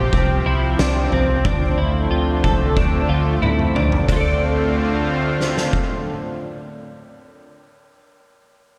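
A thick, detuned sawtooth pad with chorus holds sustained chords up front over a clean, compressed electric guitar arpeggiating through ensemble chorus and analog delay and a round, foam-muted vintage bass, opening this melancholic, haunting dream pop excerpt at 91 BPM in D minor, moving from Csus4 to Dm7, as an oversized, low-tuned drum kit with a boomy kick, fat snare, dark ride and gritty, saturated toms joins in a pumping stone room, plays a fill at 3.4 seconds and drops out at 5.9 seconds, all bathed in spring reverb in an echo-heavy mix.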